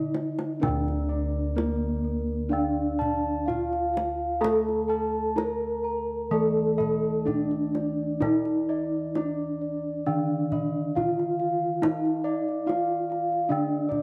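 Set in a boxy small room with a wet echo-chamber reverb, an up-front bronze metallophone carries a mellow melody with shimmering paired-tuning beats through this stately Javanese gamelan excerpt in D pelog, loosely pulsed at 64 BPM, over a soft lower metallophone accompaniment, round padded bossed-gong arpeggios, bright horn-mallet metallophone arpeggios with slapback echo, a bossed-gong bass line, and a tight hand-played kendang whose fill opens the passage.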